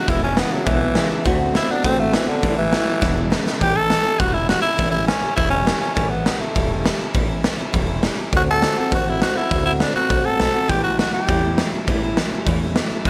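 This upbeat, rollicking rockabilly excerpt opens with a raspy, growling tenor saxophone taking a solo up front, close-miked with vibrato. Behind it, a bright dreadnought acoustic guitar is picked in the background, while an electric guitar through a small old amp adds a twangy, slightly broken-up riff with tremolo. A woody, thumpy upright bass on gut strings is plucked beneath, and a raw garage drum kit with a punchy kick and saturated, pumping room sound sits up front, rolling through a fill from 3.0 to 3.6 seconds. The electric guitar drops out at 3.6 seconds and returns at 10.7 seconds, and the saxophone carries its melody until 11.7 seconds. Moving between E7, D7 and A7 in a straight 4/4, the whole piece sits in light reverb.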